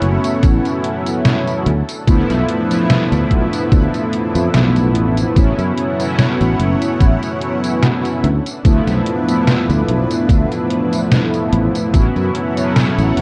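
Faded and dreamy, this slow 73 BPM vaporwave excerpt drifts between A6 and Dm6 chords, with round, detuned synth brass up front carrying a subtle chorus and tape echo, a bright, lush unison pad shimmering with chorus and phaser in the background, a growly fretless electric bass, and a detuned 8-bit drum machine of hi-hat, snare and tambourine over a lightly swung 16th feel, joined by a thumpy electronic kick from 0.4 to 12.1 seconds, all set in a dark, cassette-tape production with light reverb.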